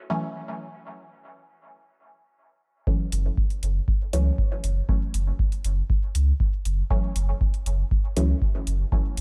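Hazy and cavernous, this dub techno excerpt at 119 BPM in F# minor opens on muted, detuned chord stabs with chorus, phaser and dub echo over an F#m7 chord, before a deep, up-front kick arrives at 2.9 seconds and a round sine sub bass with tube saturation and tape-warm metallic hi-hats join at 3.1 seconds, all set in dark digital ambience.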